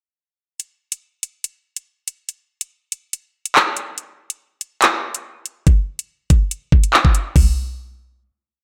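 The recording sits in a light reverb with a digital ambience, framing this short, complete hip hop piece. The mood is ominous and menacing, set at 142 BPM in 4/4 with a half-time feel. A single drill drum kit, electronic and produced, carries the whole track, entering at 0.6 seconds and playing through to 7.5 seconds, built from handclaps, hi-hat, kick drum and toms. The kit sits up front, with a knocking kick and metallic hats that skip through a drill beat. The body of the piece is a breakdown, and it closes on a final hit from 7.4 seconds.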